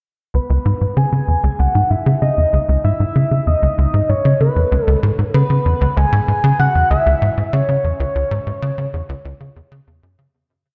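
From 0.3 seconds, a punchy sawtooth sequencer bass cycles a seven-step loop that drifts against the 4/4 bar, while a shimmering, dark pulse-width lead with vibrato, chorus and tape echo traces a free-roaming melody; together they give this expansive, cosmic ambient space music, at 96 BPM in C# minor over a single C#m7 chord, a dreamy, plate-reverb-soaked sheen before a fade-out from 7.0 seconds, with the lead ending at 9.7 seconds.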